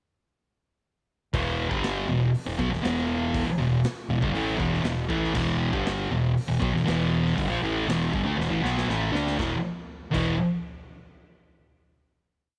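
This is a short, complete garage rock piece in E minor at 119 BPM in a straight 4/4, menacing and gritty in mood. A thick, dark fuzz guitar sits up front, double-tracked and picked, playing a power-chord riff that spans E2 to D4 from 1.3 seconds. Beneath it, a growling fingered electric bass, overdriven and set in the background, drives steady eighth notes that double the guitar riff from E1 to D2. The raw acoustic drum kit brings a punchy kick, a medium-tuned snare, hi-hat and crash, with a saturated, pumping stone-room sound and a rolled-off top that gives it a big rock groove. A drum fill from 8.4 to 9.4 seconds leads into a final E5 chord that rings out until about 11.4 seconds, all wrapped in light reverb and studio ambience.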